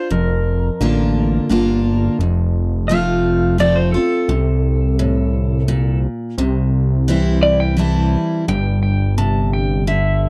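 A twangy, clean pedal steel guitar takes the solo throughout this short cut from a longer piece, its fingerpicked slide lines shaped by volume swells and compression in a sunny, down-home honky-tonk and classic country piece in 3/4. Beneath it, a full-bodied dreadnought acoustic guitar is picked up front with audible finger squeak, while a fat, detuned sawtooth analog bass with a filter sweep enters at 0.1 seconds and sits just as close. The progression moves through Bb, F and C, captured in a dry, close 1970s-style studio sound with little reverb.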